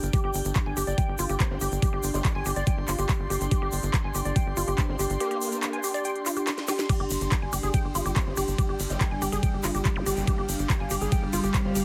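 An overdriven, knocking electronic kick leads this driving psychedelic trance excerpt at 142 BPM, with a tight, punchy sequencer bass, an overdriven techno kit of cracking snare, smooth hats, handclaps and cymbals that plays a fill at 6.5 seconds, a grainy egg shaker, an airy, breathy pad with chorus and phaser, a woody wave-folded pluck riff with chorus and delay, and a detuned formant-sweep wobble bass with tape echo set in the background. The pad, pluck and wobble bass pump beneath the kick, and an evolving, bright wavetable pad that pumps along with them joins at 7.3 seconds. A brief zap sounds at 10.0 seconds, all in a heavily compressed, radio-like mix with light reverb.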